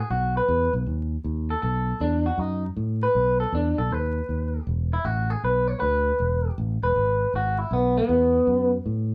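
A swung shuffle in 4/4 at 158 BPM drives this short, gritty electric blues in B mixolydian, cut from a longer piece. An electric guitar through a small old amp carries a clean solo from the start, its picked tone twangy, slightly broken-up and lo-fi, sitting up front between B3 and C#5. Underneath, a fingered electric bass plays a warm, direct and amped low line between E1 and A2, also close in the mix. The harmony rests on B before moving to E7 at 4.7 seconds and returning toward B7 at 7.7 seconds. The band plays live in one room with a moderate studio reverb, and a vinyl crackle and a dull, rolled-off top end give the soulful performance an aged character.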